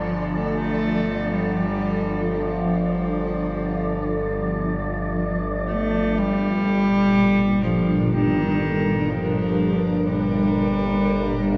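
Dark ambient drone in free time and G minor, tuned to A4 = 445 Hz, this ominous, cavernous fragment sits in a vast cathedral-like space with a long, wet reverb. A bowed solo cello sits up front, playing a pure, floating sul tasto melody with a soft attack and tape echo over a blurred, detuned granular cloud pad. Beneath them lies a resonant low G drone with sweeping overtones, chorus and phaser, while a breathy, wind-like tuned noise texture drifts high above with shimmer reverb, as the harmony moves from Dm/G to Gm at 6.2 seconds.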